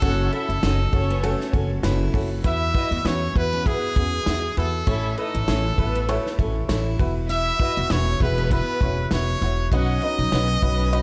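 A dark, warm studio production with light reverb and a natural room ambience frames this hopeful piano-driven pop excerpt, which moves in 4/4 with a gentle swing on the sixteenths. A brilliant, punchy trumpet carries the melody up front, its light vibrato and forceful pop-style delivery tinged with a distant, roomy quality. Behind it, a lush symphonic violin section bows a smooth, even second line, while a clear, slightly detuned upright piano with a worn, woody tone and short sustain supplies the accompaniment. A bright, full-bodied steel-string acoustic guitar plays a picked riff in the background, with finger squeak audible on its fresh strings. Down low, a thumpy pizzicato upright bass with gut strings sits up front beside a natural country drum kit of punchy kick, medium-tuned snare, hi-hat and ride, with every part sounding across the full 11 seconds over a progression of F#m, Esus2, A, Esus2 and Badd9.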